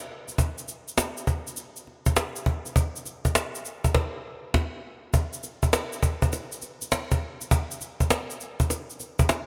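A dreamy mix soaked in a moderate plate reverb, with a tail of about 2.8 seconds, frames this short cut from a longer R&B piece. It moves at 101 BPM in 4/4 with a 66% swing on the sixteenths, giving it a bouncy, punchy feel. A woody acoustic cajon sits up front, struck with hard hands, its faint snares audible in a small-room sound. Beside it, a grainy, bright tube shaker adds texture from a softer position in the balance, both parts entering at 0.3 seconds and playing to the end. A band accent lands between 3.9 and 5.1 seconds, just before the music moves into a new section for its closing stretch.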